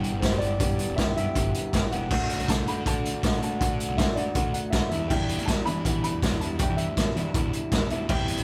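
A straight 4/4 pulse at 160 BPM drives this carefree, wistful indie rock excerpt, with a raw garage drum kit up front, its boomy kick, gritty saturated snare and rolled-off crash and hi-hat sitting in a small room, while an overdriven fuzz bass picks low in the background. An electric guitar through a small old amp plays a slightly broken-up, lo-fi riff over chords moving from G6 to D to Em7, and from 0.2 seconds a dark upright piano adds a woody, boxy melody in the upper register, its action noise and long sustain audible beneath the band. The group sounds like it is playing live together in one room with light reverb, and the piece is cut from a longer performance.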